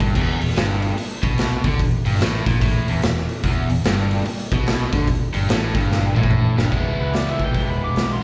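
An overdriven, double-tracked electric guitar riff with slapback echo opens this swaggering, gritty blues rock and southern rock fragment at 146 BPM with a swung feel, backed by a dark, round, foam-muted fingered bass and a punchy, saturated garage drum kit in a pumping stone room; after a drum fill at 5.9 seconds, an amplified harmonica with light vibrato, tongue slaps and scooped notes takes the melody from 7.0 seconds, all heard as a live club gig through the venue's PA.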